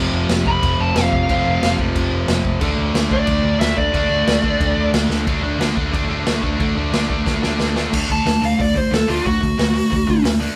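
Rowdy and upbeat, this is a short cut of straight-ahead punk rock at 181 BPM in 4/4, captured as a band playing live in one room with light reverb. A bright, cranked stack guitar with overdrive drives the riff up front across the whole clip. A second distorted guitar also plays a riff further back until 7.9 seconds. A growly, amped picked bass adds punch beneath them. The raw garage kit comes in at 0.3 seconds, gritty and saturated in a small, pumping room, with a punchy kick, a medium-tuned snare, hi-hat and crash, and a rolled-off top, and it throws in fills near the section changes. Over chords moving from F5 to D5, a dark, smooth overdriven lead guitar carries the melody from 0.5 to 4.9 seconds, then returns at 8.1 seconds for a solo.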